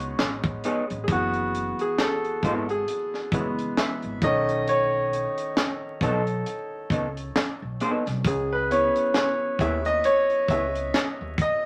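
A slow 67 BPM groove in 4/4 with a lazy swung sixteenth feel anchors this smooth, introspective neo-soul and R&B excerpt, cut from a longer piece and tuned slightly below standard pitch. A tight funk kit sits up front with handclaps, hi-hat, a tight kick and a high-tuned snare in a small-room sound, while a woody, thumpy upright bass plucked on gut strings holds the low end. The bright concert grand piano carries the harmony from the opening Amaj9#11 and takes a solo from 1.1 seconds onward over F#7sus4, B9 and C#m7, its brilliant top paired with a deep, natural bass register. A clean, picked hollow-body electric jazz guitar adds a second line from 0.2 seconds until about 10.7 seconds, its warm tone also placed close to the listener. The whole is bathed in a wet studio ambience with a short decay and a layer of vinyl crackle that lends a worn, intimate texture.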